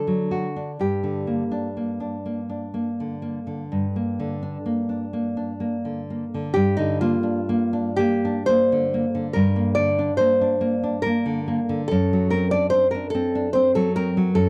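A bright, fingerpicked nylon-string guitar carries the melody up front, singing in a narrow band between Eb4 and D5 across this romantic, elegiac duo cut from a longer piece. Beneath it, a second nylon-string guitar plays the accompaniment in a dark, full-bodied classical voice that reaches down to F#2, with finger squeaks audible on the strings. Set in G minor and 12/8, the music moves slowly and freely in rubato, around 39 to 49 dotted-quarter beats per minute, giving it a yearning, unhurried feel. The harmony settles from D onto G minor almost at once and holds there, turning toward D7 over F# near 11.9 seconds as the second section, which begins at 6.6 seconds, draws to its close. Both guitars sit close and intimate in a moderate booth ambience with a short, dry decay.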